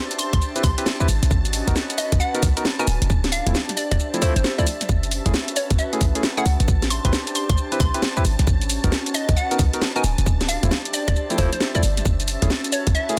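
UK garage in a two-step style, bouncy and late-night, with a swung shuffle carried by a garage kit of cracking snare, bright hats and shaker, a tight electronic kick and a punchy, saturated 808-style bass sitting up front. A hollow, detuned square-wave pluck with chorus and delay carries the melody, while a barky, clean tine electric piano adds delayed stabs over minor-ninth chords that move from Am9 through G#m9, Dm9 and F#m9. In the background, a silky vintage string machine holds sustained chords and an airy, breathy pad adds a sustained texture, both pumping with sidechain beneath a dense, heavily limited digital sheen.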